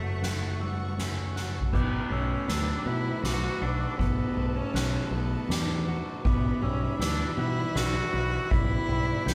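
A bowed solo cello carries a brooding, cinematic melody from the first moment, its tone clear and focused with close vibrato, set over lush sustained chords from a symphonic string section in the background. This post-rock excerpt moves at a slow 80 BPM in 3/4, with a clean, twangy electric guitar picking compressed arpeggios and a glockenspiel struck with rubber mallets adding mellow, bell-like arpeggios high above. Beneath them, a fingered electric bass growls with bright overdrive, sitting prominently in the mix. A soft-mallet drum kit enters at 0.2 seconds, up front with a boomy kick, fat snare and dark cymbals, and plays a fill from 1.4 seconds into the longer second section at 1.7 seconds. The harmony moves from F#m to Bm7 and then G6/B, all heard as a band playing live in one large studio room with a moderate reverb.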